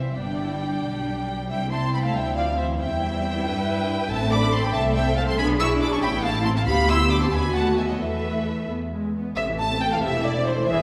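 Heard from further back in a reverberant scoring stage, this restless, stormy classical-period movement for string orchestra moves quickly in 6/8 at 92 BPM with rubato, its up-front first violins carrying an expressive melody with vibrato and portamento over a rich second violin line, lush violas, distant cellos in the background and clear, up-front double basses, as C major darkens into A minor at 4.1 s.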